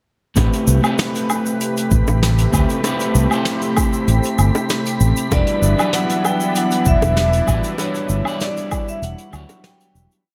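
A lush hall reverb with small room ambience surrounds this short, wistful sunset chillout piece in A minor at 97 BPM, a straight 4/4 groove moving from Am9 to Em9 that fades out from 7.0 s. A growly, punchy fretless electric bass plays a syncopated riff up front beneath an overdriven, deep electronic kick, a soft brush kit with shaker, closed hi-hat, woodblock and snare, and tight, high-tuned bongos in the background. A dark, slightly broken-up electric guitar holds rootless chords with syncopated pushes through tape echo and shimmer reverb, a thick, warbling sawtooth pad with chorus sustains the harmony, an airy, wind-like noise texture holds a high note from 1.5 s, and a ringing vibraphone enters at 5.3 s with a motif-based melody.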